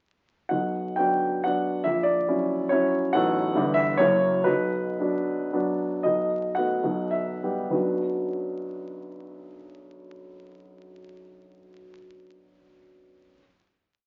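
A polished, present grand piano plays a complete, capricious and wistful romantic classical dance in B minor and 3/4, with a single-line melody in dotted rhythms over octave bass and chords at a rubato 90-150 BPM, slowing from 3.8 seconds into a brief coda and a final B minor chord held from 7.7 seconds, all heard through moderate studio reverb and the crackle and muffled top of a very old 78 rpm record.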